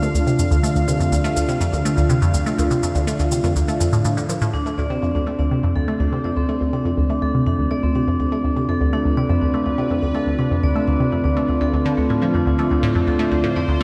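A squelchy, resonant blip pluck plays a riff up front from the start, its phaser and delay giving the sequencer-driven space music a bright, juicy bite, while a sweeping sawtooth pad holds sustained chords beneath it with chorus and a slow filter swell. Over the first 4.5 seconds, electronic bongos and cabasa tap softly in the background through delay as a filter sweep moves across the synth arpeggio sound, with the harmony resting on Dm in D dorian at 123 BPM in a straight 4/4. At 4.5 seconds the percussion stops and a vibraphone with medium hard mallets enters, playing metallic, ringing arpeggios with the motor off, its dark, smooth tone sitting up front and echoed by delay. Here the chord turns to Dm7 and the analog synth pad fades in, its full-bodied sub-octave weight swelling underneath. Soaked in a lush hall reverb, the cosmic, hypnotic mood carries through to the end of this section cut from a longer piece.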